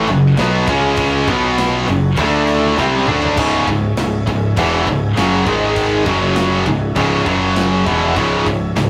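A tight, bright distorted guitar sits up front in this heavy metal excerpt, driving a picked riff in C# phrygian at 100 BPM in straight 4/4. Behind it, a second, double-tracked distorted guitar and a scooped, high-gain guitar thicken the riff, while a growling electric bass, overdriven and both direct and amped, carries the low end. A modern acoustic drum kit with a tight kick and a medium-tuned snare sits in the background, coming in at 0.1 s, and a drum fill from 2.8 s leads into the second section at 3.4 s. Far beneath it all, a very quiet, lush unison pad of detuned sawtooth with chorus holds slow-attack, warbling vintage chords. The chords move through power chords on F#, C#, B, D and G# and land on C# minor. The mood is relentless and heavy, and the sound is a rough rehearsal-room recording with tube saturation and a moderate booth ambience.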